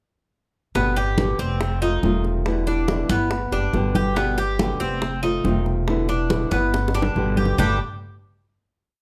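This complete short piece of Cuban son and guajira opens with a thumpy, woody upright bass at 0.7 seconds, playing a tumbao that anticipates the chords in a sunny, danceable G major at 140 BPM in straight 4/4. At 0.8 seconds the rest of the band arrives together: a dark, boxy nylon-string guitar strumming with muted slaps, a metallic Cuban tres picking an arpeggiated guajeo on doubled strings, thick-skinned congas with slaps and open strokes, and tight, high-tuned bongos in steady eighths alongside a hand bell. The montuno vamp cycles through G, F7 and Em7, with the bass and tres sitting up front and the bongos close and dry, a little lower in the mix. A drum fill from 6.7 seconds leads into a final chord at 7.6 seconds that rings out in a moderate large-studio reverb to the end at 9.0 seconds.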